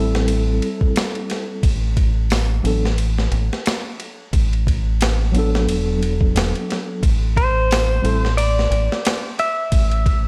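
A mellow tine electric piano, tinted by harmonic tremolo, 12-bit sampler grit and tape echo, opens this dark, melancholic trip hop excerpt at 89 BPM alongside a round, punchy, up-front dub bass. A gritty, compressed boom bap kit, with thumpy kick, high-tuned snare, hi-hat and ride re-recorded in a large room, joins at 0.1 seconds, while the chords move from Am7 to Bm7/A in A dorian over a lightly swung sixteenth feel. A clean, twangy lap steel takes the melody at 7.4 seconds with slide and volume swells through tape echo, and the piano stops at 8.3 seconds.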